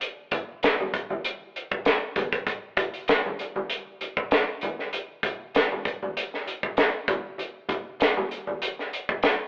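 Bittersweet and cinematic, this short soul fragment, cut from a longer piece, moves at 98 BPM in 4/4 with a light sixteenth-note swing. A compact cocktail drum kit carries the groove from the first instant, its hi-hat, punchy kick and high-tuned snare sitting up front with a dark, smooth, rolled-off character. Congas join at 0.3 seconds, low-tuned yet bright, with a thin skin and soft hands, at a softer level than the kit. Both acoustic instruments carry a small-room closeness, wrapped in a moderate stone-room reverb that lingers for about 1.3 seconds. The rough rehearsal-room capture and telephone-like sound lend the whole fragment a lo-fi intimacy that suits its wistful cinematic mood.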